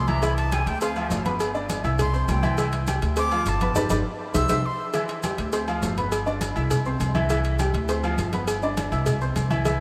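Festive and joyful, this salsa excerpt drives along at 204 BPM in a straight 4/4 in C major, cycling through C, Dm7 and G. A breathy, bright metal jazz flute with a crisp, chiffy attack, vibrato and analog delay takes the melody as a solo until 4.9 s, over a clear baby grand piano with short sustain and lush chorus and an up-front, woody pizzicato upright bass. Ringing vintage agogo bells and timbales, low-tuned congas in the background, a round close cowbell and grainy, distant maracas fill out the percussion, with a drum fill and band accent from 3.8 s, and a huge ambient reverb soaks the mix in a dreamy haze.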